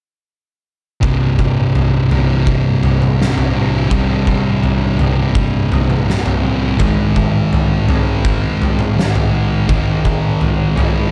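A dark, lightly reverberant production opens this sludgy, ominous stoner and doom metal excerpt, cut from a longer piece, where an oversized, low-tuned acoustic drum kit sits up front with a boomy kick, a medium-tuned snare, toms and a gritty, saturated, pumping big-room sound. Two picked, distorted fuzz guitars play a thick riff between 1.0 and 11.1 seconds: one warm and up front, the other shadowed in the background. The riff moves from a C power chord to an Ab power chord at 6.8 seconds.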